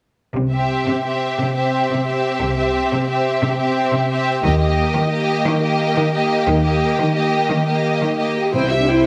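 A soaring, heroic cinematic adventure score excerpt in 12/8 at 118 BPM opens at 0.4 s with a bright, up-front cello section and a dark, portamento-shaded double bass section, soon joined by lush bowed upper strings (a smooth violin melody, an expressive, rich second violin line and focused viola accompaniment) moving from C to Eb and back to C, before a mellow French horn section enters with sustained chords at 8.4 s and hard-mallet timpani sound in the background, all within a moderate scoring-stage reverb.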